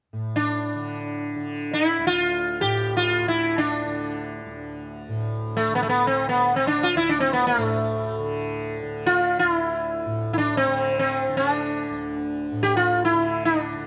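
A softly plucked, shimmering tanpura drone opens this longing, introspective Hindustani classical fragment, and at 0.4 s a bright, up-front sitar enters with a buzzing, plectrum-plucked melody ringing over its sympathetic strings, all captured by close, detailed microphones in light reverb.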